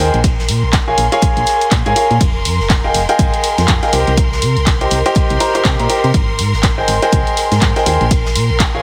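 Energetic and soulful, this piano house excerpt at 122 BPM in Bb dorian, with a swung 16th feel, sets an up-front grand piano riff with dub echo over lush, distant bowed strings holding sustained chords and a round, dark FM bass, the three parts pumping with sidechain, while a punchy electronic kick re-recorded in a large room, analog drum-machine handclaps and hi-hat, and a very quiet acoustic kit adding fat snare and ride cymbal drive a Bbm7–Fm11–Cm7–Abmaj9 progression under light reverb and a heavily compressed, radio-like finish.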